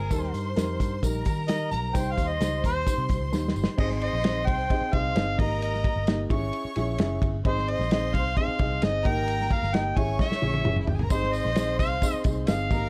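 A straight 4/4 groove at 131 BPM drives this uplifting, uptempo 1960s-style soul piece in Ab major, cut from a longer track. A soul drum kit recorded in a small room sets the pulse with a punchy kick, a medium-tuned snare, dark cymbals and a rolled-off top, adding fills along the way. A foam-muted, amped electric bass with a round, vintage tone holds down the low end, while a woody, boxy upright piano supplies mellow accompaniment with plate reverb. Up front, a harmonica with soft attack, light vibrato and scooped notes plays the melody in a jazz style, taking a solo over the opening 3.8 seconds before the chords move from Eb and Cm to Ab. Behind it, a close, smooth studio violin section bows an even second line with vibrato, and a jingly tambourine sits in the background, dropping out after the first few seconds and returning at 11.1 seconds.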